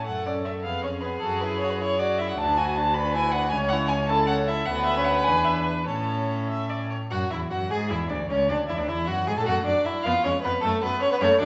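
In a 6/8 at 103 BPM, counted in dotted quarters and played with rubato, this lively, cheerful excerpt from a quick classical-period string quartet movement in A major is tuned to A4 = 444 Hz and repeats its opening idea after 7.1 seconds. A dark, nasal first violin carries the melody up front, a warm second violin with an airy bow adds a lower line, the viola fills in with a rich accompaniment and light vibrato, and a close, rich cello anchors the bass. The gut strings give the period-style playing a reedy edge, heard through the wet reverb of a church or concert hall that softens the top of the sound.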